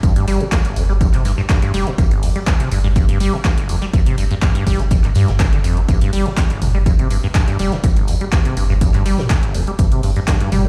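Acid house with a raw, gritty mood, cut from a longer piece and played on a big sound system in a bare room with stone room reverb. A squelchy, resonant sawtooth acid bass sits up front with a bright, fast-attack riff, carried by a filter sweep across its full 10.7 seconds and roughened by tube saturation, analog chorus, 12-bit sampler grit and dub echo. Beneath it, a deep, thick triangle sub bass holds sustained notes with saturation and sidechain pumping. An overdriven electronic kick drum punches dry and up front, joined by an overdriven analog drum machine playing handclaps, hi-hat and toms. Far in the background, a distant, roomy brush kit adds hi-hat, a medium-tuned snare and tambourine, all thinned by high-pass filtering, over a single G5 chord.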